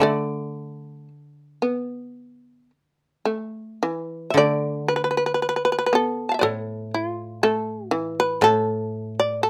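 A powerful, buzzing shamisen carries the melody up front in this brief, austere cut from a longer piece of Japanese traditional chamber music, its plectrum-plucked notes sounding percussive and fretless. A second shamisen plays a lower line beneath it, while a koto plucked with fingerpicks adds a dry, woody accompaniment in its low register. The meditative performance moves freely in 4/4 at roughly 51-62 BPM, shifting into a new section at 4.4 seconds, and is captured with close, detailed microphones and light reverb.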